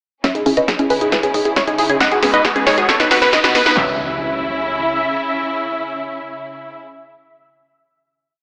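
This uplifting trance piece in C# minor at 136 BPM opens at 0.2 s straight into a build-up, with everything but the bass and the effects arriving together in an emotional, bittersweet mood. Up front, a punchy, detuned sawtooth supersaw stab plays a repeating riff melody in sixteenths over a pedal note, moving in thirds and sixths through a filter sweep, sidechain pumping and tape echo. A very quiet, full-bodied analog pluck doubles that anthem line in unison, while a second, round analog pluck in the background spins a 3-step arpeggio loop that drifts against the bar, colored by chorus and a moving notch. Beneath them, a lush, bowed symphonic string section holds sustained chords with vibrato and a smooth top, and a dark FM bass rolls in sixteenths, very low in the mix. The drum fill comes from two analog drum machines re-recorded in a large room: a four-on-the-floor kick and claps sit in the background, while a punchy snare, hats and high congas sit up front. 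A riser and impact enter at 1.5 s as the harmony moves from C#madd9 through G#m7 and B, and at 3.8 s the build resolves onto a final C# minor chord. The drums and arpeggios fall away around that point, and the whole piece sits in a wet scoring-stage reverb with an AM-radio character.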